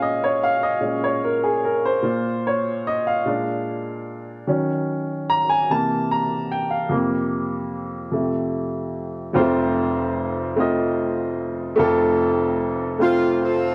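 The recording sounds like worn old cassette tape, with a warbly pitch drift and a moderate echo-chamber reverb that lets each chord hang in the air. This solemn, fervent gospel fragment, cut from a longer piece, moves slowly in 6/8 at 49 BPM counted in dotted quarters, with a straight feel and tuning set to A4 = 439 Hz. An upright piano carries the accompaniment, sitting up front with a woody tone and long sustain, and it plays alone through the opening passage as the harmony moves from Bbm7 and Bbmadd9 through Bb7, Ebm7 and C7 before settling on Fsus4 and F. A new section begins at 9.3 s. At 13.0 s a clear, close-miked saxophone section briefly takes up the melody in jazz style, its ensemble voicing shaded with vibrato.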